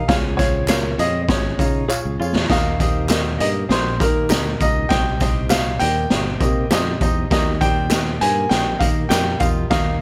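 A raw garage drum kit sits up front in this uplifting, joyful slice of uptempo 1960s-style soul at 100 BPM in Eb major, its high-tuned snare and boomy kick sounding saturated and gritty, with a drum fill at 1.9 seconds. A clear, polished baby grand piano carries the melody over a woody upright piano with audible action noise, while a dark, round fingered electric bass anchors chords moving from Db through Eb and Cm. In the background sit a slightly broken-up electric guitar riff through a small old amp, hollow-body semi-hollow guitar stabs entering at 0.7 seconds, and tambourine with group handclaps, all wrapped in light reverb and small room ambience.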